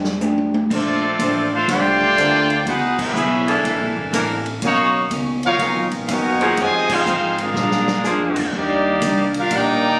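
A drum fill with a punchy kick opens this joyful, energetic big band swing excerpt at 123 BPM, alongside a woody, growly upright bass, a dark, clean hollow-body electric guitar and a mellow, distant trombone section, before a brilliant, tight trumpet section takes the melody up front at 0.7 seconds and a roomy saxophone section adds sustained chords from 2.2 seconds, with band accents and a second fill landing over jazzy chords, all captured on a phone in a compressed, reverberant club.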